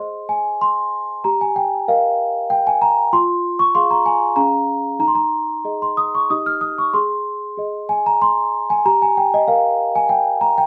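A solo celesta carries this short classical lullaby, its bell-like, delicate voice sitting up front in a light reverb. The mood is tender and innocent, moving at 95 BPM in a gentle, straight 3/4. The celesta ranges from Db4 up to F6, its soft felt hammers giving the tone a mellow, airy sweetness. The harmony settles on Ab, passes through Fm and a Bbm7 over Db, then hangs on an Ebsus4 before resolving to Eb and back home to Ab around 6.9 seconds. Cut from a longer piece, the passage lasts about 10.7 seconds and ends on Eb over G, leaving the phrase open.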